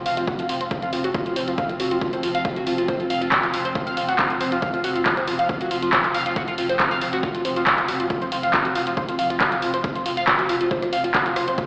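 A swarming, detuned drone and a deep, saturated sub bass open this dark, industrial slice of driving peak-time techno, with an overdriven synth lead and a punchy analog drum machine arriving almost at once and an electronic kick following at 0.3 seconds. The lead is the loudest voice alongside the drum machine, a gritty, screaming, guitar-like riff built from sawtooth and square waves with ring modulation, vibrato, a phaser and digital delay, sitting up front in a straight 4/4 groove. Beneath it, the drone's granular, evolving haze carries its own reverb and a slow attack with a long release, while the thick sine bass stays in the background under overdrive and a low-pass filter. The drum machine supplies handclaps, hi-hat and rim clicks, re-recorded in a large room along with the kick, and sidechain pumping moves through the bass, drone, lead and the drum machine's hats. The whole piece sounds as though it is played on a big sound system in a bare stone room, heard through an AM radio sound, and runs about 11.7 seconds as an excerpt cut from a longer piece.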